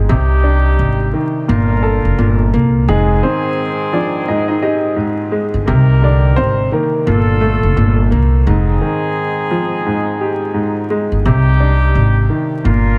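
A woody, pizzicato upright bass sits up front in this reflective, gritty hip hop fragment, taken from a longer piece and moving at 86 BPM in 4/4 with a 61% swing on the sixteenths in F dorian. Beside it, a smooth, vintage grand piano with short sustain carries the accompaniment through a cassette-tape colour and filtering, over chords that move from Cmadd9 and Gm9 to Fm9 and Cm9. A dark, tight horn section with light vibrato adds jazz-style stabs from 0.1 seconds, filtered and trailed by tape echo. From 2.9 to 7.3 seconds an intimate upright piano takes the melody, its audible action noise giving a natural feel as tape echo follows its phrases. Vinyl crackle and a light reverb frame the whole mix with a worn, lo-fi grit.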